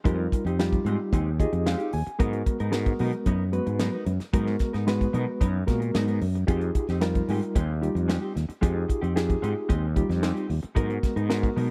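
A growly fretless electric bass sits up front in this nocturnal, intense electric jazz fusion passage, its bright, punchy, directly amped tone driving a straight groove in 4/4. A tight funk drum kit plays hi-hat, kick and snare in a small, natural-sounding room, with a high-tuned snare and a tight kick placed close to the listener. A reedy, clean electric piano plays accompaniment through its built-in speakers with tremolo, adding a short fill at 1.1 s. A mellow, dark electric guitar, fingered and compressed, adds clean stabs coloured by a lush chorus. The harmony moves between Fm9 and Abm9, first shifting at 2.2 s. The dry, close recording has a 1970s studio character, and this passage is cut from a longer piece.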